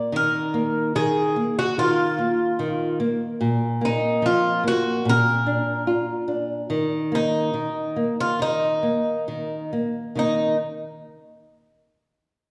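In a rubato 4/4 around 73 BPM, this longing, passionate fado fragment in Eb harmonic minor sets a picked Irish bouzouki, metallic with its double strings, carrying the melody up front while a small, fingerpicked nylon-string guitar gives warm accompaniment through Ebsus2, Bb and Eb5 chords, both playing from 0.0 to 10.6 seconds inside a wet recital-hall reverb that sounds as if heard from further back in the room.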